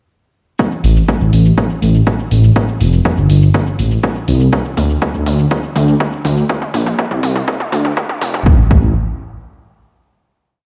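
A dark, detuned sawtooth bass sits up front, deep and rumbling with a beating, saturated edge, playing off-beat notes that pump against the kick in this cinematic, hypnotic melodic techno piece. An overdriven, punchy four-on-the-floor electronic kick, re-recorded in a large room, drives it alongside an analog drum machine of hi-hat, shaker and toms, with the drums entering at 0.6 seconds. Those 0.6 to 8.5 seconds form one long build-up with a drum fill and a filter sweep, before a final note rings out to 10.4 seconds with the air of a big sound system in a bare room.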